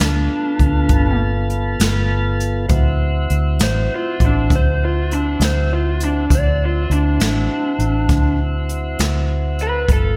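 A big arena sound, with a moderate recital-hall reverb and a touch of small-room ambience, frames this swaggering, rollicking slow blues in 12/8 at 67 BPM, in D mixolydian tuned to A4 = 435 Hz and cut from a longer piece. Up front, a polished jazz kit played with brushes, with a boomy kick, sits beside a dark, foam-muted vintage fingered electric bass that is round and punchy, while a smooth tonewheel organ holds clean sustained chords through a slow rotary speaker as the harmony moves from G7 to D7 at 2.7 seconds. Over them, a lo-fi, overdriven lead guitar through a small cranked amp picks out the melody, and the drums stop at 10.0 seconds, just before the other parts end at 10.2.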